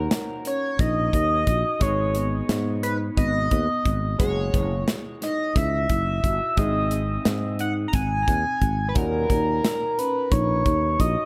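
Driving and intricate, this progressive instrumental in 7/8 puts an edgy, tearing sync lead with chorus, vibrato and tape echo up front over a growly, punchy fretless bass, an acoustic drum kit with a tight kick and a medium-tuned snare, woody soft-mallet marimba arpeggios and a smooth, vintage grand piano carrying its own tape echo in the background, set in an echo-heavy mix with light reverb.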